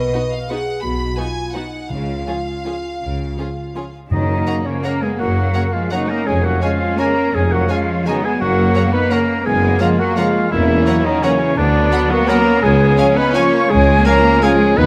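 A classical orchestral ballroom waltz, elegant and sweeping, sways in 3/4 with uneven beats and rubato as a chamber violin section sings the vibrato melody over a second violin line, smooth violas, intense cellos, lush double basses and the mellow sustained chords of a French horn section. Round, soft-mallet timpani sound in the background from 1.9 seconds until 4.6 seconds, and at 4.1 seconds a clear clarinet, a pure silver flute and a distant oboe join with second lines while a soft-attack tuba deepens the bass, followed by very quiet trombone chords. The sound is rich in the strings, with close second violins and double basses, set in a moderate scoring-stage reverb, and the passage is cut from a longer piece.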